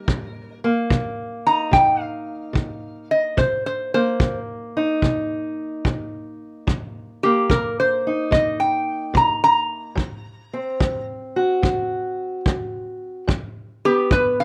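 Smoky and mournful, this swung acoustic country blues in C minor moves at 73 BPM, with a metallic, nasal resonator slide guitar carrying the melody up front over a dark, woody, boxy fingerpicked parlour acoustic on old strings and a punchy small-room kick drum with a rolled-off top, set in moderate studio reverb as the harmony moves from Cm7 to Ab7 at 10.0 seconds and to G at 13.3 seconds.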